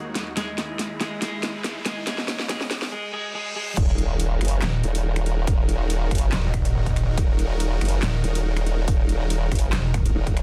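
Heavy wobble dubstep in a menacing half-time swing, opening on a clean semi-hollow electric guitar melody with harmonic tremolo and digital delay over lush, bright supersaw chords that pump and sweep through a low-pass filter, a very quiet riser, reverse cymbal and impact, and a tape-warm dubstep drum kit with a huge snare and metallic hats, before the drop at 3.8 seconds brings in a punchy electronic kick and an up-front formant-sweep wobble bass with chorus and overdrive, joined at 4.6 seconds by a detuned, saturated pulsing pluck wobble bass, all set in a dense, dry, heavily limited master.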